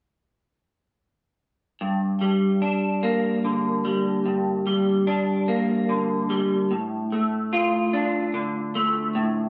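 Rock in G minor at a slow 49 BPM in 6/8, this cathartic, cinematic fragment features a single up-front electric guitar through a small old amp, bright, twangy and slightly broken-up with a lo-fi edge, picking arpeggios from 1.8 to 9.5 seconds through ensemble chorus and slapback echo, moving from Gm to Dm/A at 6.7 seconds within a dark production and a moderate, large studio reverb.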